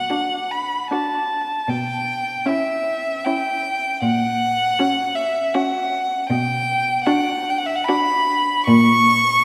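Solemn and yearning, this slow romantic movement for string quartet is cut from a longer piece and breathes in a flexible, rubato triple time. A smooth, up-front first violin carries the high melody with vibrato, over a focused second violin in the background and a distant viola accompaniment, before an intense cello bass enters at 1.7 seconds. The quartet sits in a reverberant concert hall with a long, wet tail.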